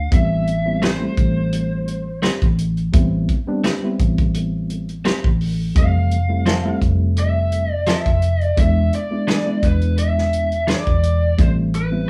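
A straight-eighth soul blues groove at 85 BPM in 4/4 with a light sixteenth-note swing sets a brooding, smoky mood in A minor, moving through Am9, Fmaj7 and E7 in this short cut from a longer piece. A dry, natural soul drum kit with a tight kick and medium-tuned snare sits up front beside a round, foam-muted fingered bass, while a reedy electric piano with harmonic tremolo plays through its built-in speakers. A dark, lo-fi overdriven lead guitar carries the melody, and a compressed, slightly broken-up guitar with tremolo adds stabs from 0.8 to 10.9 seconds, all heard as a band playing live in one room with moderate large studio reverb.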